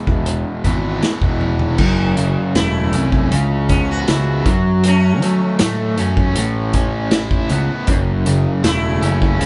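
A buzzing, shimmering sitar takes a solo from 1.8 seconds over a crunchy, double-tracked overdriven guitar riff pulsing with tremolo, in this dark, mysterious psychedelic rock excerpt in F# minor at 79 BPM. A round, fuzz-soaked picked bass sits up front with a punchy vintage drum kit whose dark cymbals and pumping room sound roll through a fill at 1.4 seconds. The chords move from E through F#m7, C#m7 and Aadd9, and the band plays live together in a large studio with moderate reverb and a rolled-off top end.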